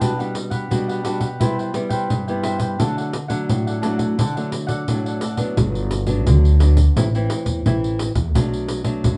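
The upright bass is the most prominent part: a woody, thumpy, pizzicato tone on gut strings, placed up front, entering at 5.6 seconds to anchor the second section in its low register. This short, festive, sunny samba and choro excerpt moves at 86 BPM in a straight 4/4 in G major, with chords such as Gmaj7/B, Cmaj7 and D giving way to Gmaj7, Am and Bm7. From the start, a jingly pandeiro, close and dry and played with soft hands, sits forward in the mix beside a small-sounding, fingerpicked nylon-string guitar that carries the accompaniment through to 9.2 seconds. A crisp, mellow, picked cavaquinho adds higher accompaniment in the quieter background during the opening section, dropping out as the bass arrives. The band plays live together in one room, and the moderate studio ambience and rounded top end lend the whole performance a natural sound.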